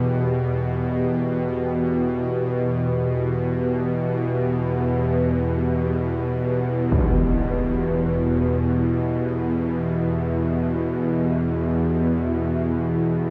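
A tense, string-like bowed drone sits up front, its detuned sawtooth tones ringing with ring modulation and vibrato low in the register, while a bright, resonant sawtooth pad with chorus sustains an Emadd9 chord above it in free time, a huge, bright impact lands at 6.9 seconds, and a vast reverb casts this ominous, desolate dark ambient excerpt in E minor into a cavernous space.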